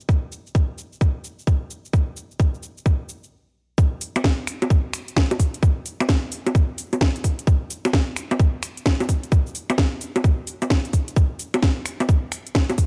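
A dark, dry production frames this late-night, skippy UK garage excerpt at 130 BPM in 4/4, swung at 64% on the 16ths. An up-front, tape-warm electronic house kit of bongos, finger snaps, metallic hats, shaker and a cracking snare runs throughout, while a tight, layered electronic kick from 0.1 seconds carries a large-room character; both briefly stop at 3.3 seconds before the drop lands at 3.8 seconds.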